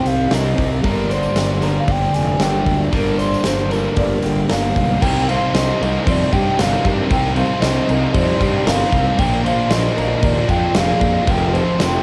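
A mellow, hollow concert flute carries the melody from the first second, its soft-attack vibrato tinted by cassette tape and analog delay, over twangy arpeggios from an electric guitar through a small old amp bathed in lush chorus. Behind it sit three picked riff guitars: a biting overdriven one trailed by reverse reverb, a sludgy double-tracked one, and a dark, thick fuzz one with analog chorus, all anchored by a round, fuzzed fingered electric bass. From 0.1 seconds a huge, hall-sized arena drum kit with a fat snare, punchy kick and bright cymbals sits up front beside a jingly background tambourine, giving this melancholic, dreamy shoegaze excerpt in C minor at 115 BPM the hazy feel of a home cassette recording.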